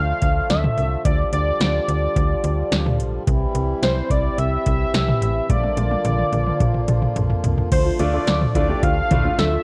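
Synth-pop in D minor at 108 BPM with a cool, nocturnal mood, this short excerpt sets a bold, chorused octave-doubled sawtooth lead with vibrato over a reedy, breathing pedal harmonium, a snappy FM slap-like bass and an overdriven analog drum machine with a deep kick and metallic hats, moving from Dm through C and Bb with a drum fill at 5.5 seconds before a dark, delayed pluck arpeggio enters at 7.9 seconds and a clear grand piano at 8.0 seconds, all carried in a worn cassette sound with warbly pitch drift and light digital ambience.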